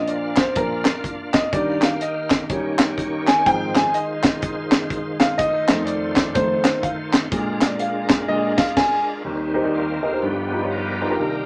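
An upright piano with a woody, up-front tone and sustained chords on a tonewheel organ, lightly overdriven and spun through a fast rotary speaker with chorus vibrato, open this uptempo gospel excerpt together. A tight funk drum kit, acoustic and natural with a high-tuned snare and a snug kick, comes in almost at once, while group handclaps sit hollow and dry in the background. Over a swung feel and a progression rich in seventh and sixth chords, the piano leads the first section with a reverent yet uplifting mood, capped by a band accent. At 9.3 seconds the organ takes over as soloist with a full, shouting sound, and a muted French horn section enters on very quiet, nasal, stopped chords that sound distant. A moderate small-room ambience surrounds the ensemble.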